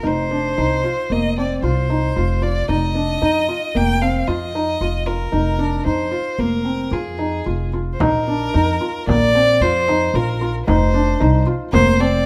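A focused, bowed violin with rich vibrato opens this hypnotic, pensive chamber excerpt in an uneven 5/4, set over soft arpeggios from a felt-muted upright piano whose mellow, intimate tone carries audible action noise, and a woody, thumpy pizzicato upright bass sitting up front. At 8.0 seconds a deep frame drum played with hard hands joins from the background, shading the shift to a new section. The quartet breathes in a moderate recital-hall reverb.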